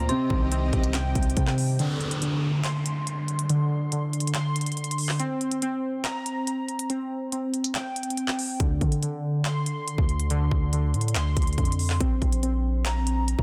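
A half-time trap beat at 141 BPM drives this menacing, melancholic hip hop fragment, with a hard-clipped kick, crisp hats, handclaps and rim clicks up front beside warbling, nostalgic lo-fi synth keys arpeggiating through chorus, delay and a filter sweep, while a dark felt-muted upright piano, lush bowed strings in the background and an eerie, inharmonic FM bell color only the opening, until the deep sine 808 bass drops away at 1.8 s for a break marked by an electronic downlifter and returns at 8.6 s as the chords move from Cm toward Dm7 and Bbsus2.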